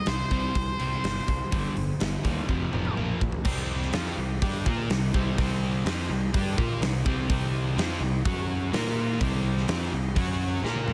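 A heavy, menacing hard rock excerpt in C minor at 125 BPM opens with a nasal lead guitar with a parked wah, overdrive and analog delay, playing a short melody until 2.9 seconds over two background riffing guitars, one crunchy and overdriven, the other bright and distorted. A dark, round, fuzz-laden picked bass and a huge, up-front arena drum kit with a punchy kick, bright cymbals and a pumping hall sound drive the riff through power-chord moves on C5, G5, F5 and Bb5. A drum fill carries into the passage at 3.5 seconds, where a very quiet, gritty overdriven tonewheel organ adds thick sustained chords with key click, vibrato and third-harmonic percussion, all set in a studio reverb.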